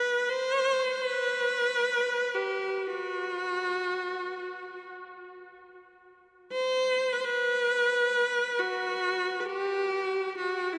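Meditative and spacious, this short excerpt of world meditation music in free time features a lone bowed viola, clear and focused with vibrato, sitting close and up front between E4 and C5 for its full 10.8 seconds, its line trailed by a diffuse ambient delay and bathed in the long, echoing reverb of a vast cathedral.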